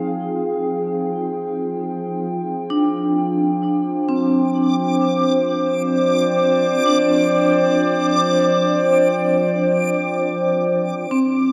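This ambient excerpt drifts in free time, spacious and serene, with its tuning set to A4 = 444 Hz. A warbling, nostalgic tape-like pad sits up front for the full 11.5 seconds, holding mellow, lo-fi sustained chords colored by chorus and its own reverb. Alongside it, a vibraphone struck with medium hard mallets plays ringing, metallic arpeggios in a narrow middle register, its bright tone carrying a medium motor vibrato and trailing into a diffuse ambient delay. At 4.6 seconds a reversed, granular texture enters high above on a single sustained note, dreamy and detuned with a slow attack, lingering until 11.1 seconds. The harmony moves from Fm7 to G7sus4/F at 3.6 seconds, all set in a lush hall reverb with a cassette-tape character.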